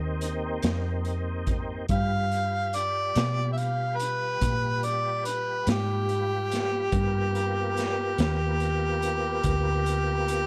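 An overdriven, jazz-style harmonica takes the solo from 1.9 s, up front with scooped notes, light vibrato and a soft attack, as this mournful, smoky slow blues in 12/8 moves at 48 BPM from Cm7 to G7#9. Beneath it, a smooth tonewheel organ holds sustained chords through a slow rotary speaker with chorus vibrato, while a dark, round, foam-muted electric bass sits punchy and close. A gritty, saturated garage drum kit with a rolled-off top, punchy kick and pumping small-room sound plays hi-hat, kick and snare, all captured dry in this excerpt cut from a longer piece.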